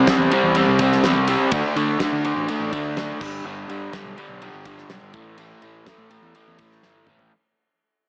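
A crunchy, double-tracked overdriven guitar riff sits up front from the first moment of this driving, swaggering classic rock passage in A minor at 124 BPM, alongside a growling fingered bass run through its own grit, with a damped 70s acoustic kit entering at 0.1 seconds with a fat snare, tight kick and dark cymbals. In a straight 4/4, the music moves through C, D5, G and A5, fading out across its length before the drums close with a fill at 6.8 seconds. Light reverb and small-room ambience accompany a small-speaker sound.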